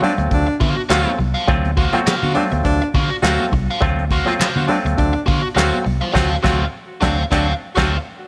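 A playful, funky groove at 103 BPM in D mixolydian opens with a breathy, whispered baritone saxophone carrying a close, intimate second line over crunchy overdriven guitar through wah, stringy clav stabs with auto-wah, a soft brush kit with a fat snare and punchy kick, and bright, high-tuned congas in the background. A dark, foam-muted vintage bass joins at 0.2 seconds, and the saxophone's analog delay adds echo to its clear tone. The congas drop out at 6.0 seconds, just before a band accent at 6.2 seconds in this short cut from a longer piece, all set in light reverb and studio ambience.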